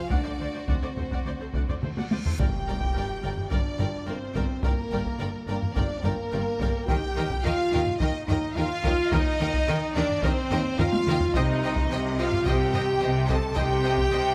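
A dark, dramatic cinematic orchestral cue, cut from a longer piece, in which a focused violin section carries the vibrato-laden melody over a background second violin line, lush violas, rich cellos and distant double basses, with a roomy, dark French horn section sustaining chords, a compressed, saturated taiko ensemble struck with hard sticks, and a huge reverse cymbal that leads into an impact at 2.4 seconds, all set in a moderate concert hall reverb.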